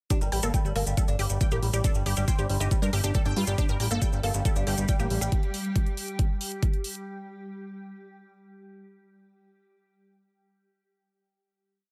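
Psychedelic and alien, this short psychedelic trance piece rides a straight, four-on-the-floor groove from start to finish. An overdriven, knocking electronic kick sits up front, joined by bright, overdriven electronic hi-hats playing programmed hats and backbeat, while hand-played maracas add grainy sixteenths. A fat analog bass rolls in sixteenth notes beneath a woody, plectrum-plucked oud that repeats a riff melody over a pedal note, colored by phaser, digital delay and sidechain pumping. Above it, a detuned unison pluck plays a punchy acid line with accents and a filter sweep, also pumping and delayed. At 4.2 seconds an evolving wavetable pad enters with morphing, chorused drone chords. After the oud, pluck, bass and maracas stop at 5.3 seconds, the pad carries on with the drums; the kick drops out at 6.7 seconds and the hi-hats at 7.0, and the pad ends at 7.1 seconds, all in a dry-sounding room.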